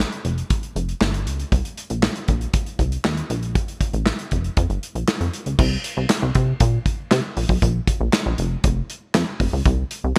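A bright, 1980s-style digital sheen with light reverb frames this short cut from a longer early-eighties boogie funk piece, setting a slick, late-night mood over a straight 4/4 pulse. Up front, a plucky analog bass built from sawtooth, square and sine tones, with wave-folded edges and a fast-attack filter pluck, delivers punchy, funky lines that decay into a mellow body. Alongside it, a modern studio drum kit sits just as forward, its small-room acoustic sound dark and smooth with a rolled-off top. The tight kick, medium-tuned snare, handclaps, hi-hat and crash cymbal give the groove a polished snap. Both parts play from the opening moment, carrying the music from its first section into a second at 5.6 seconds before the cut ends around 10.2 seconds.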